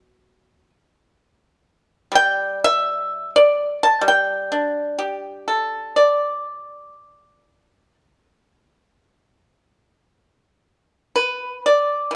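Close, detailed microphones capture this recording with only a light touch of reverb around the room, giving an intimate and clear sound. It is a piece of Chinese traditional music for solo plucked strings, cut from a longer work, with a pastoral, elegant mood. A single acoustic pipa, played with fingerpicks, carries the whole performance from start to finish, ranging from B2 up to A5. Its tone is bright, dry and percussive, sitting up front in the mix. The playing moves freely in rubato over a 4/4 metre, and a new section begins at 10.1 seconds before the recording ends at 12.2 seconds.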